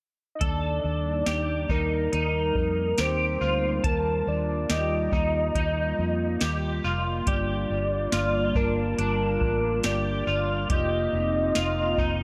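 A steady, straight 4/4 pulse at 70 BPM comes from a soft vintage rhythm box with a deep kick, crisp snare and metallic hats, while a dark, round, foam-muted fingered electric bass sits up front in this floating, ethereal dream pop piece in Eb lydian, moving from Ebmaj7 to Gm7 at 7.3 seconds and F7sus4 at 10.7 seconds. Over it, a full, octave-layered synth lead with vibrato carries the melody through chorus and dub echo, a twangy electric guitar at the edge of break-up picks arpeggios, and a hollow, flute-like pad holds mellow, slow-attack chords. The echo-heavy mix is bathed in a moderate plate reverb, with dub echo trailing the drums, guitar and lead throughout this short cut from a longer piece.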